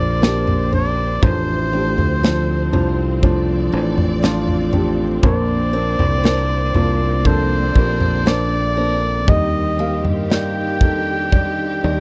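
A dry, close recording with a 1970s studio character frames this tender, heartfelt pop ballad excerpt, where a clear oboe with light vibrato sings the classical-style solo melody over a soft, boxy felt-muted upright piano. A growly, punchy fingered electric bass sits up front, and a polished acoustic drum kit with a tight kick, medium-tuned snare and toms comes in at 0.2 s. Lush bowed strings hold sustained chords in the background while a very quiet, full-bodied steel-string acoustic guitar picks arpeggios with the odd finger squeak, all moving through gentle chords from Bbadd9 to Ebmaj7.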